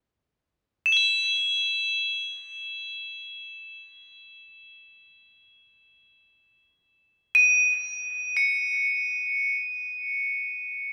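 Spacious and haunting, this short passage cut from a longer piece is world meditation music that floats in free time. A single set of crotales carries the whole recording, entering at 0.9 seconds and ringing on until 10.9 seconds. Struck with plastic mallets, the crotales sit high, between C#7 and B7, with a bell-like, shimmering tone that feels airy yet stays up front. A diffuse ambient delay trails their notes, and a wet cathedral reverb with a 5.5-second decay places them in a vast, echoing space. The result is a lone, glinting voice hanging in a cavernous hall, suited to stillness and contemplation.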